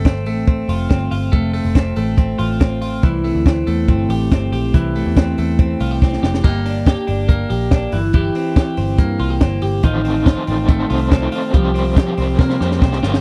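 A bright, twangy twelve-string electric guitar rings out arpeggios with slapback echo over a round, foam-muted picked bass and a punchy, high-tuned compact cocktail drum kit in this breezy, youthful jangly indie pop excerpt at 141 BPM in F major, with drum fills at 6.0 and 12.4 seconds and a crunchy, tremolo-laden overdriven guitar joining at 9.8 seconds, all captured in a dry, close 1970s-style studio sound.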